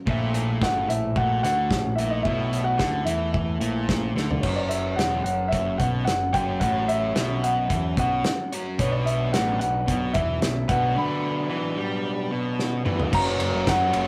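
A clear, woody, slightly detuned upright piano carries a bittersweet, cool melody over overdriven semi-hollow and sludgy distorted guitar riffs, growling picked bass and a loose indie rock drum kit with a punchy kick and a fat snare at 110 BPM, while a mellow tine electric piano hums in the background until 4.1 seconds, in this rough rehearsal-room excerpt cut from a longer piece, with a drum fill and break leading to 13.1 seconds.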